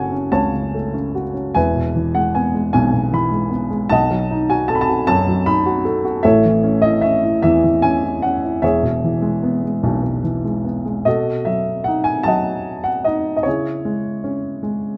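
Wistful and reflective, this lyrical classical solo piano piece drifts at a slow 51 beats per minute in a lilting 6/8, with a free, rubato feel in E major, tuned to A4 = 442 Hz. A dark baby grand piano carries everything alone, ranging from deep E1 up to B5, its mellow, boxy tone and short sustain heard up close with the mechanical noise of its action audible beneath the notes. The harmony moves gently from F#m through E, B7, A and E6 in the opening passage, then shifts at 11.1 seconds into a new section built on B7 and C#m. Just before the close, a brief piano fill arrives at 14.6 seconds, and the fragment ends there as a piece cut from a longer work. Close, detailed microphones and a light touch of reverb keep the sound intimate and present.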